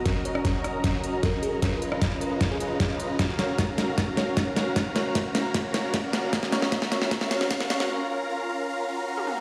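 Future bass at 153 BPM in a half-time 4/4 feel, this playful, bright build-up in F# major is cut from a longer piece and moves through D#m7, C#13 and F#maj7/C# before landing on C#6. A huge, thick supersaw riff, detuned and compressed with a sub octave underneath, sits up front and pumps to the sidechain while a low-pass filter sweeps across it for the whole passage. A dubstep drum kit with a deep snare, crisp hats, rim clicks and toms plays a drum fill alongside a knocking electronic kick, both carrying a tape-warm, layered character. In the background, a bell-like FM electric piano adds a sparkling melody from 0.3 seconds, coloured by chorus, phaser and tape echo, while a very quiet riser and swell creeps in from 1.4 seconds. The kick drops out at 7.6 seconds and a break opens at 7.9 seconds, all heard through a lush hall reverb as if played on a big sound system in a bare stone room.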